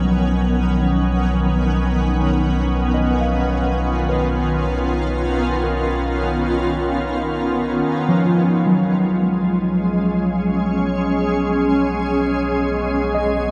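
A shimmering, up-front ambient pad holds sustained chords in B lydian, its detuned, octave-up glow softened by chorus and its own reverb, while a worn, slightly out-of-tune tine electric piano plays arpeggios through tape echo. Beneath them a round sub bass sits on B1 with tube saturation, and a very quiet organ-like drone hovers in the background, all of it set in a lush hall reverb in free time. This warm, luminous ambient fragment moves from Badd9 to F#add9/B at 7.9 seconds, over a 13.5-second span cut from a longer piece.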